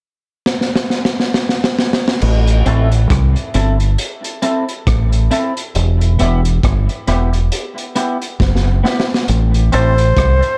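A crunchy, gritty breakbeat drum kit with dark cymbals and a high-tuned snare opens this serious, meditative roots reggae excerpt with a fill from 0.5 seconds, joined by a round, punchy dub bass, a twangy clean electric guitar carrying tube saturation, analog chorus and tape echo, and finally a close-miked flugelhorn with vibrato and tape echo entering at 9.7 seconds over an echo-heavy mix in a small room.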